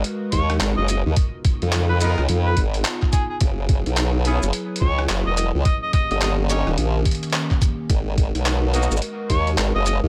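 A warbling, lo-fi tape-like pad, an up-front wobble bass with formant sweeps and tube saturation, and a gritty, pitched-down boom bap sampler kit of handclaps, hi-hat, rim click and shaker open this playful, swaggering, swung glitch hop cut, joined at 0.3 s by a thumpy electronic kick and a mellow, vintage harmonica solo with vibrato and dub echo, while a clear, tight jazz-style horn section adds stabs from 2.0 s in a dry mix.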